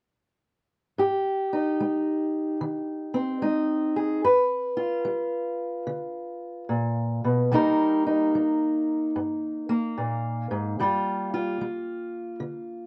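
Acoustic country blues, smoky and mournful, carried by a lone fingerpicked steel-string acoustic guitar in a slow, swung 4/4 feel. The guitar sits up front with a dark, boxy parlour tone, playing from 1.0 to 12.9 seconds across a range from G2 to B4. Its chords move from Abmaj7 through G7#9 and Cm7 before settling on a bare G7 with its third omitted at 10.8 seconds, giving the passage a brooding, unresolved cast. A moderate studio reverb lends a modest sense of room, while the sound of worn, warbling old cassette tape adds a wavering pitch drift that deepens the aged, melancholy atmosphere. This brief fragment is cut from a longer piece.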